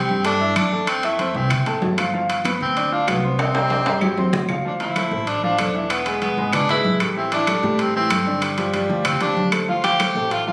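A straight, danceable salsa groove rolls along on bright, thin-skinned congas and woody claves in the background, ringing metal-shelled timbales, and a thumpy, dark pizzicato upright bass on gut strings. Up front, a boxy grand piano comps beneath a breathy, whispered tenor saxophone lead with light vibrato and a soft attack, intimate and clear in a pop style. This sunny fragment of a longer piece takes a drum fill from 3.4 to 4.6 seconds before moving into a new section, all captured in a moderate studio room on a phone with reverb and compression.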